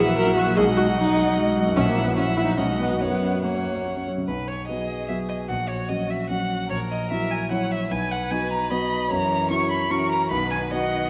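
Bathed in a wet concert-hall reverb, this short excerpt from a quick classical-period movement for piano quintet unfolds in a graceful, cheerful triple metre with supple rubato. A focused first violin with vibrato carries the melody up front, while a close second violin and an expressive, soft-attacked cello with portamento, set in the background, add second lines. A smooth, even viola and an intimate, polished concert grand with deep bass, long sustain and audible action noise share the accompaniment, as the harmony moves between B and F#7, with a new section opening at 4.3 seconds.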